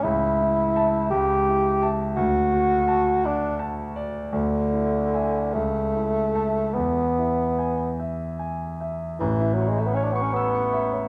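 Tender and warm, this romantic classical fragment in A major drifts in a rubato 6/8 at roughly 48-57 BPM, with a mellow solo bassoon carrying the melody with light vibrato over a bright concert grand piano whose deep bass and long sustain support the line, the harmony settling on E at 6.8 seconds before the opening theme returns on A at 9.2 seconds, all set in the moderate reverb of a recital hall with a dark, warm production.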